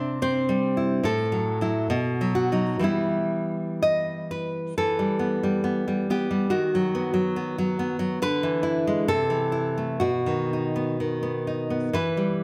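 Romantic solo classical guitar in E minor, this short passage, cut from a longer piece, moves in a rubato 2/4 that drifts between 56 and 74 BPM with an intimate, passionate mood. A single fingerpicked nylon-string guitar carries everything, sounding bright and full-bodied, placed up front with a deep classical character across a span from A2 to E5. The harmony opens on C before passing through F#m7/A and B to settle on Em at 2.8 seconds, then the phrase returns and winds through B/D#, E7/D, Am/C and B. The guitar rests again on Em at 11.9 seconds, closing the phrase in the home key. A moderate recital hall reverb with a 1.5-second decay wraps the instrument in a natural, resonant space.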